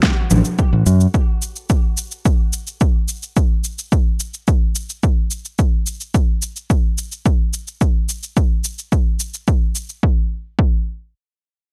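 A punchy, overdriven electronic kick drum sits up front in this wistful, smooth sunset chillout cut, moving at 108 BPM in a straight 4/4 and tuned to A4 = 442 Hz. A layered electronic snare with a fat, overdriven sound and a shaker runs alongside it until 10.0 s, while a fingered electric bass appears only briefly, from 0.3 to 1.1 s, spanning A1 to F#2 with a direct, up-front tone. The dark, warm production places everything in a small room ambience, and the piece shifts into a new section at 10.0 s before this cut from a longer track ends.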